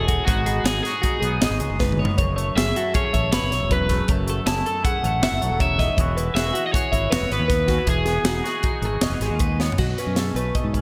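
A crunchy overdriven guitar carries a delayed lead melody, set over a twangy clean electric guitar and a compressed twelve-string electric guitar picking arpeggios, both bathed in lush chorus, while a direct fingered bass anchors this wistful math rock and midwest emo passage in 5/4. A crisp fusion drum kit sits up front with a high-tuned snare and tight kick, adding fills around 1.8 s and 9.6 s as the harmony moves from G#m7 to Emaj9. The lead drops out at 9.4 s before a B13 chord arrives, all within a lush hall reverb and a bright 1980s-style digital production, in a fragment cut from a longer piece.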